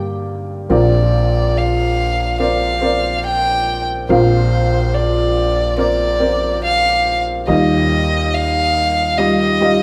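A straight, unhurried 4/4 pulse at 71 BPM carries this short excerpt of an acoustic folk-pop ballad in Bb major, nostalgic and heartfelt in mood. A clear, slightly detuned upright piano sits up front with a long sustain, ranging from its low register up into its upper range as accompaniment, while a pizzicato upright bass with steel strings adds a growly, woody foundation underneath. At 0.7 seconds a single bowed violin enters with the melody, warm and earthy in tone, with light vibrato and a smooth top, placed close and prominent. The harmony opens on Gm, settles onto Bbadd9 as the violin arrives, and moves to Ebadd9 at 7.5 seconds. Everything rings out in a wet recital-hall reverb, giving the recording the spacious air of a church or concert hall.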